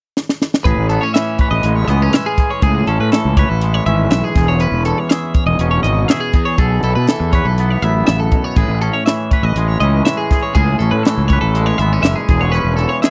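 A growly fuzz bass, overdriven and up front, anchors this short cut from a longer math rock and midwest emo piece, entering at 0.7 seconds just after a brief drum fill opens at 0.2 seconds. The crisp fusion drum kit sits forward in the mix, its high-tuned snare, tight kick and hi-hat sounding polished and airy. Above them, a bright, compressed twelve-string electric guitar picks arpeggios in a high register, while a clean, fingered electric guitar with a twangy edge and subtle chorus plays accompaniment across a broad range. The harmony moves through Amaj7, E6 and B7sus4 in a straight 4/4 feel, giving the intricate parts a wistful cast. The sound is dry and close, like a 1970s-style studio recording.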